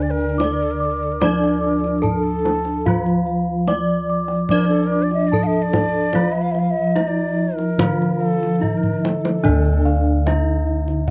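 Up-front, close-miked bossed gongs carry a full, round bass in this hypnotic, shimmering gamelan excerpt, beneath a dark, smooth metallophone melody, a mellow padded-mallet metallophone accompaniment, airy high metallophone arpeggios with paired-tuning beats, a breathy, hollow bamboo bansuri second line with vibrato, and deep, vintage kendang that enters at 0.4 seconds and plays a fill from 8.6 to 9.4 seconds, after which band-limited bossed-gong arpeggios join, in a dark production with little reverb.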